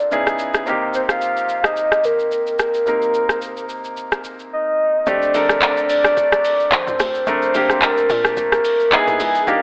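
Amapiano at 109 BPM in 4/4, this short excerpt has a hypnotic, deep mood, with a light swing on the sixteenths and a light, telephone-like digital ambience around it. A soft, round synth lead carries the melody from the start, its triangle and sine layers doubled an octave below and colored with chorus, phaser, vibrato, a low-pass filter and digital delay. Underneath, a clear, polished grand piano supplies the chords, moving from Dbm7 to Cm7, while a layered deep house kit of deep kick, dark hi-hats, handclaps, rim clicks, shaker and toms sits up front. A filter sweep runs through the opening 5.1 seconds and ends in a brief silent gap, after which the drop arrives. There a hollow, bouncy log drum bass enters in the background, and the harmony opens onto a Bbmaj13 before returning to Dbm7 near the end.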